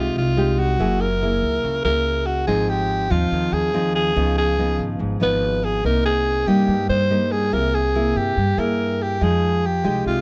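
A growling alto saxophone, fingerpicked nylon-string guitar and pizzicato upright bass open together on an Fm9 in this wistful, smooth bossa nova fragment, cut from a longer piece and moving at 142 BPM in a straight 4/4. Up front, the breathy, raspy saxophone carries the solo melody with vibrato, while the full-bodied classical guitar voices the rich chords beside it. Beneath them, the woody, thumpy gut-string bass sits darker and lower, all within a light reverb.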